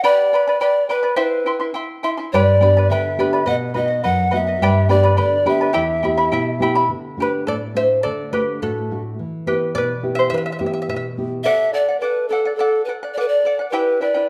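Andean folk with an earthy, wistful mood, this excerpt from a longer piece in a straight 2/4 sets an airy wooden pan flute melody, with vibrato and a crisp, chiffy attack, over a shimmering fingerpicked charango whose double strings ring throughout. A full-bodied, thumb-plucked nylon-string guitar joins at 2.3 seconds, adding deep classical bass along with some finger squeak. The flute steps aside for a charango solo from 6.9 seconds before returning to close, all set close and intimate within a moderate recital-hall reverb.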